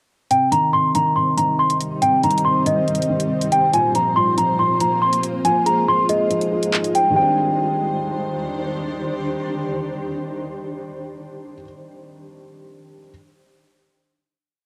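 Menacing and ominous, this short drill piece in half-time feel plays like a hazy home recording on cassette, with a light reverb hanging over it. A bell-like, delicate celesta carries a looping melody up front, repeated like a sampled loop, while a felt-muted upright piano supplies a mellow, dark patterned arpeggio in eighths with audible action noise, both softened by a low-pass filter. A granular cloud pad enters at 1.2 seconds with blurred, detuned sustained chords that evolve slowly behind them. The drill drum kit brings electronic, overdriven handclaps and bright skipping hats with fast hi-hat rolls, dropping out at 7.0 seconds as the music settles onto a final C minor add nine chord, and the celesta falls away at 8.4 seconds. The pad fades by 11.4 seconds while the piano lingers until 13.1 seconds, closing the piece in a cloudy haze.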